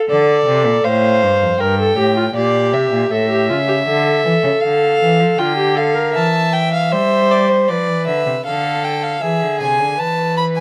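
A smooth-topped viola with light vibrato opens this fragment of a driving yet contemplative baroque-style D minor fugue for string quartet at 79 BPM in 4/4, quickly joined by a close second violin line and a distant, nasal-toned cello bass, all bowed in period style on gut strings with a reedy edge and light reverb, before the viola drops out at 6.1 seconds as an up-front first violin with light vibrato takes over the melody in the higher register.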